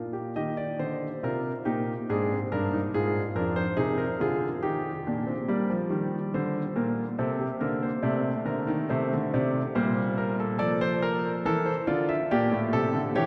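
Driving yet contemplative, this short cut from a longer work is a baroque-style classical fugue in three voices for solo grand piano, set in a triple metre with a straight feel. The concert grand has a warm tone, a deep bass and a long sustain, and it sits up front, spanning F2 to E5. A cathedral reverb with a long 4.7-second decay bathes the instrument, and the top end is soft and rounded. After an opening statement in E-flat major, the music turns to a new section at 5.5 s, where the key moves to G minor. The piano plays throughout until the cut ends at 13.3 s.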